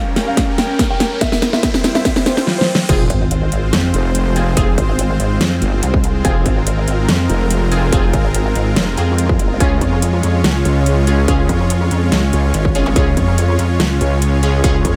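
A lightly reverberant, heavy and aggressive wobble dubstep passage at 143 BPM in half-time F harmonic minor opens with a dark, boxy baby grand piano melody with delay, a nostalgic tape-like pad and a lush, bright supersaw pad pumping beneath background riser, swell, sub drop and zap effects and a drum fill, then drops at 2.9 seconds into an up-front, saturated wobble bass, joined at 3.1 seconds by a pulsing pluck wobble bass, alongside bold phaser-treated orchestra-hit-like synth stabs, a dubstep kit with a huge snare and metallic hats, and a distorted electronic kick.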